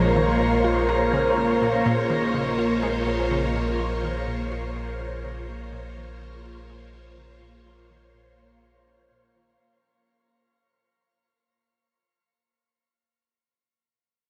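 A swirling, vintage string machine opens this hypnotic, cosmic ambient passage, holding sustained chords up front with ensemble chorus and phaser. Alongside it, a fingerpicked concert harp rings out arpeggios in the background through tape echo. Beneath them, a round, deep analog bass holds a single dark low note, while an airy, breathy tuned noise texture drifts like wind at the back, mellowed by its own reverb. At 0.2 seconds a detuned analog pluck joins with a riff, its bright sawtooth-and-square tone carrying a fast attack and short decay, thickened by chorus and tape echo. Everything sits in a drenched shimmer reverb with a long tail as the music fades out, and the harp lingers alone until 12.6 seconds after the other parts stop at 9.6.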